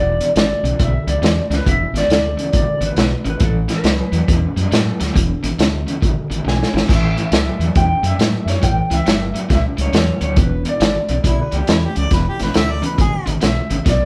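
Electric blues shuffle with a gritty, swaggering mood, moving at a swung, loping pace in a cut from a longer piece. A clean, dark lap steel guitar carries the melody throughout, its slide lines shaped with volume swells, while a raw garage guitar drives the low riff with overdrive and tremolo adding a picked, warm edge. Beneath them, a fingered electric bass sits round and punchy, and a vintage drum kit sounds muffled and lo-fi up front, with dark cymbals, a medium-tuned snare and a punchy kick, breaking into a brief fill at 6.5 seconds. The harmony shifts between E6, A7sus2 and A6 voicings, and a mellow harmonica slips in at 11.3 seconds for a short second line with soft attacks, scooped notes and light vibrato. The band sounds as if playing live together in one large studio room, with a moderate reverb giving the whole a loose, lived-in feel.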